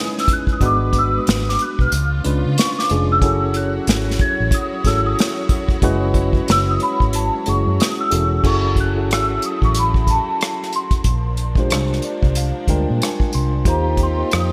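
A large celesta carries the melody through this excerpt of introspective, sultry neo-soul R&B, its bell-like, delicate tone given a touch of analog chorus and taking a solo turn from the opening through 8.4 seconds. Set at 92 BPM in 4/4 with a 60% swing on the sixteenths and tuned to A4 = 445 Hz, the groove rests on an up-front acoustic drum kit played with bundle sticks: dark cymbals, a medium-tuned snare with rim clicks, hi-hat and a tight kick. A vintage fingered electric bass, foam-muted, round and punchy, enters at 0.6 seconds. A mellow tine electric piano heard through its built-in speakers supplies clean accompaniment and adds a fill near the close, while a lush, bowed string section holds smooth sustained chords low in the mix. The harmony moves through rich extended chords, from C#m9 and C#7b9 to F#m9 and on to A#13 and D#69. Light reverb and small room ambience frame a bright 1980s-style digital production.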